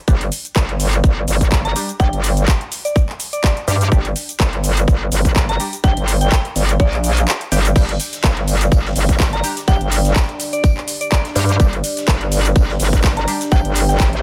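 A small-room ambience surrounds this gritty, aggressive bass house excerpt, which runs at 125 BPM in 4/4 with a 55% sixteenth-note swing in G minor. An up-front, tight electronic kick with studio reverb anchors the groove alongside a layered garage kit of crash, handclaps, shaker and metallic hi-hats. Beneath them a bright, saturated FM wobble bass with chorus and sidechain pumping growls in the low register, while a nasal, band-passed sawtooth chord stab sits in the background, colored by phaser, lush chorus, delay and pumping. At 1.6 seconds a soft, pure FM bell melody begins, warbling through chorus, phaser and delay. The kick briefly drops out at 7.3 seconds, and at 7.8 seconds a deep, moody analog pad with a slow attack and lush chorus swells in together with a very quiet big-room acoustic kit of hi-hat, medium-tuned snare and tambourine.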